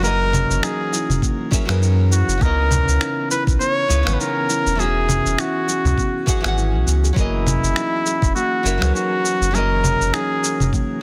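Relaxed and warm, this sunset chillout excerpt at 101 BPM with a swung 16th feel sets a clear, close-miked flugelhorn melody with vibrato and digital delay over fingerpicked classical nylon-string guitar and a woody, ringing kalimba tucked in the background, both also delayed, while a deep, round sine sub bass sits up front, a gritty, sampler-style blend of electronic shaker, congas and finger snaps with a soft-clipped snare keeps time, and a knocking electronic kick joins at 1.2 seconds, the whole set in a small room with light reverb and a dense, heavily limited master as the chords move from F#13 through C#m9 and E69 back to F#13.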